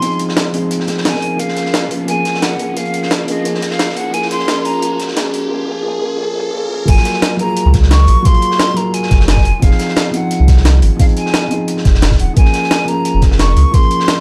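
This lush, dreamy liquid drum and bass passage, cut from a longer piece, opens on a build-up. An airy, expressive silver flute with vibrato and a soft attack carries the melody over a felt-muted upright piano, mellow and intimate with thick felt and audible action noise, and both parts move through filter sweeps as a faint electronic riser hovers in the background. Beneath them, a compressed, pitched-up electronic kick adds a thumpy punch, and a gritty, sampler-style breakbeat kit with a high-tuned snare, hi-hat and crash cymbal drives a straight 4/4 pulse. A second, saturated breakbeat kit with a mid-forward, rolled-off character sits further back. At 6.9 seconds the drop arrives with a deep, full sub bass doubled at the octave placed up front, as the harmony opens onto Gbmaj9 before returning to Fm7 and Bbm7. Tape echo trails the flute and a digital delay shadows the piano, all set in light studio reverb within a dark, warm mix.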